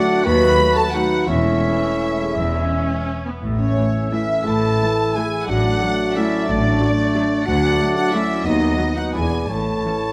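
Sweeping and festive, this short section of an orchestral ballroom waltz moves in 3/4 at 159-194 BPM with a rubato feel, in A major. A rich, smooth violin section carries the melody, joined by a silver concert flute with a pure, distant tone, a clarinet in its lower register, and a second violin section that sits in the background with soft attacks and expressive portamento. Mellow French horns, the most prominent part in the mix, hold sustained chords alongside a tight trombone section, while a trumpet section adds soft-edged stabs. From 0.3 seconds, lush bowed cellos and distant double basses supply the bass, and a viola section fills in the accompaniment from 0.6 seconds. The harmony moves from B7/D# through A/E, E, A and D before closing on E7 and A, captured with close, detailed microphones and a light reverb.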